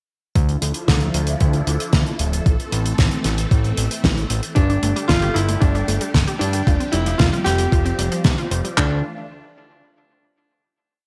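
A bright, 1980s-style digital production with light reverb frames this short, bittersweet and danceable italo disco piece, where a swirling, phased string machine holds sustained chords over a fat, saturated analog bass driving in eighth notes and a thumpy four-on-the-floor kick and handclaps from a 12-bit drum machine, joined by a dry, damped 70s kit supplying a fat snare and closed hi-hat, both drum parts treated with gated reverb. At 4.6 seconds a clear concert grand piano enters with a motif-based melody through delay, while a round, detuned analog pluck sets an eight-step arpeggiated sequence with chorus in the background. The harmony moves from Dmadd9 through Am, Gsus2 and Fsus2 before settling on a final Dmadd9 chord at 8.8 seconds.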